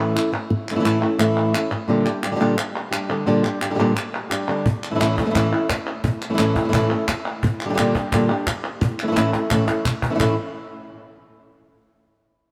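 Passionate and dramatic, this flamenco passage, cut from a longer piece, drives along at 173 BPM in a straight 4/4. A dark, up-front acoustic flamenco guitar carries the melody, fingerpicked on fresh strings with audible finger squeak, moving between A and Gm/Bb chords. Crisp palmas hand claps join at 0.2 s with a small-room character, and a snappy cajon with snares arrives at 4.7 s, its compressed, saturated punch adding weight. A drum fill at 9.3 s leads toward a closing moment where the harmony drops away. A long plate reverb places the performance further back in the room and lends the ensemble a spacious, dramatic air.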